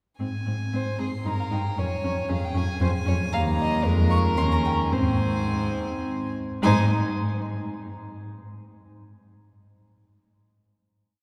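Lively and cheerful, this classical-period movement for string quartet unfolds in a flexible, rubato triple metre, played in period style on gut strings. One violin carries an airy, nasal melody, while a second violin enters at 0.7 s with a reedy counter-melody and sustained chords. The distant viola adds repeated notes and chords in the rhythm of the tune, and the up-front cello supplies repeated and sustained bass notes, all heard from further back in a wet church acoustic before the piece settles on a final chord at 6.6 s.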